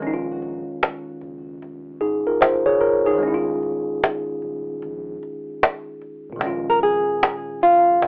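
Worn, warbling cassette tape with a telephone-like tone colours this nostalgic, melancholic lo-fi hip hop fragment in Bb minor at 75 BPM with a swung 16th-note feel, where an up-front, woody cajon struck with hard hands and a slightly out-of-tune, mellow tine electric piano bathed in plate reverb sit over a deep, round dub sub bass in the background, moving from Bbm7 to Ebsus2 and back, until a thumb-plucked classical nylon-string guitar with audible finger squeak takes the melody at 6.7 s.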